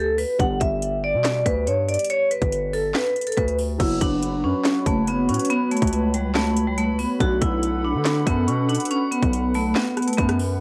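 A half-time trap groove in 4/4 drives this dark, brooding hip hop excerpt, cut from a longer piece, with a trap drum kit entering at 0.2 seconds: a hard-clipped kick, sharp snare, metallic hi-hats, handclaps, rim clicks and crash cymbal, overdriven and sitting up front with a cassette-tape grit. Beneath it, a distorted 808-style bass pushes heavy and aggressive, its saturated sine tone carrying a noise layer, a fast attack and a decaying tail. The melody comes from a vibraphone struck with medium hard mallets, ringing and up front with a medium motor vibrato, softened by a low-pass filter and the same tape character. A boxy, mellow grand piano supplies accompaniment in the background, also filtered. At 3.8 seconds, as the harmony moves from Gmaj7 to F#sus4 and later Bm7, a hollow, flute-like pad joins with slow-attack sustained chords, detuned and treated with chorus, all within a dry, intimate home cassette recording.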